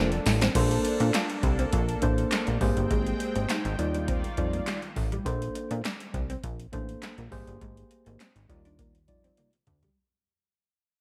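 A straight, up-front electro drum machine pattern, with a deep kick, punchy snare, metallic hats, handclaps and gated reverb, opens and closes on a drum fill, while a plucky, funky analog bass with a fast attack, filter pluck and ring-modulated edge anchors this smooth, feel-good early-eighties boogie funk clip as it fades out from 0.6 seconds. A worn, slightly out-of-tune tine electric piano with phaser carries the accompaniment over a lush, detuned unison pad whose chorused, sustained chords drop away at 5.2 seconds. Further back, a dark, slightly broken-up electric guitar plays a fingered riff through analog chorus, all set in a light digital ambience.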